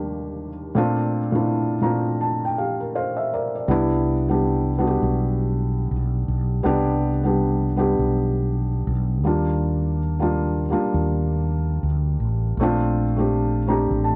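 A felt-muted upright piano, intimate and softened by a low-pass filter, opens this dreamy, nostalgic lo-fi hip hop excerpt alone with major-ninth chords and a fill from 1.5 seconds, before a round, punchy fretless electric bass joins at 3.7 seconds over a swung 16th-note feel in a dark production with moderate studio ambience.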